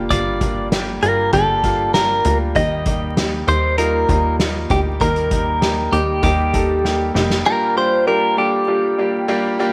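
A plucky analog bass with a fast, decaying filter pluck sounds from the first moment, joined a split second later by a distant, roomy soft-mallet drum kit with a punchy kick and a rolled-off top, together setting a straight 4/4 pulse at 98 BPM. In this dramatic, bittersweet piano-driven pop piece in G minor, a bright concert grand piano moves through Gm7 and Eb while a clean, compressed, direct-recorded electric guitar carries the melody up front through a phaser. After a drum fill ending at 7.5 seconds, the drums and bass drop out and the piano and guitar continue over Gm7, all set in light reverb with a veil of vinyl crackle.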